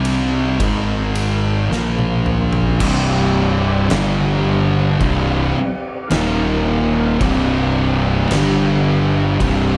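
A slow, straight 4/4 pulse at 55 BPM drives this sludgy, hypnotic stoner and doom metal passage in C minor, cut from a longer piece. An oversized, low-tuned acoustic drum kit with a fat snare, a punchy kick and dark, saturated cymbals rings in a bright stone room that pumps, and it plays a fill from 1.7 to 2.8 seconds. Up front, a growly, overdriven fingered electric bass carries the bottom end, while two dark, distorted fuzz guitars grind out the riff in the background over C5, Ab5 and Bb5 power chords. At 2.8 seconds a brighter, double-tracked and compressed fuzz guitar joins the riff as the harmony moves through C5, G5 and Eb5. Beneath it all, a very quiet, clean tonewheel organ holds sustained chords through a slow rotary speaker with chorus vibrato, and a light studio reverb surrounds the mix.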